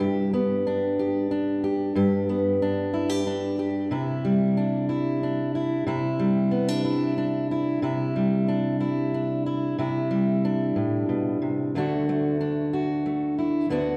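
A fingerpicked steel-string acoustic guitar opens this brief folk fragment alone and carries it from start to finish, set close and up front in the sound. Its tone is dark, with the full body of an auditorium-sized instrument, and its range runs from the low D2 up to G4. The mood is warm and pastoral, moving in a gentle, straight 6/8 lilt. The harmony rests on G before shifting to Cadd9 at 3.9 seconds, then a new passage begins on D at 11.7 seconds, where the piece is cut off. A long, wet church reverb of about 3.1 seconds surrounds the guitar, so each picked note rings out and lingers in the resonant space of a large hall.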